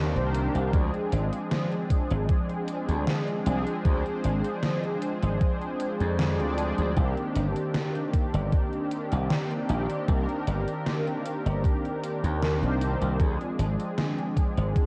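A straight four-four groove from a gated 80s digital drum machine anchors the pulse, its hi-hat and snare drenched in gated reverb and overdrive, while an overdriven, thumpy electronic kick joins at 0.7 s and a bright, punchy slap bass sits up front. Over this, a mellow synth brass part holds sustained, round, detuned sawtooth chords with ring modulation, a filter sweep, chorus and delay, moving between Cm9 and Dm7b5. This hazy, woozy vaporwave passage, cut from a longer piece, carries a cassette-tape character with light reverb and digital ambience.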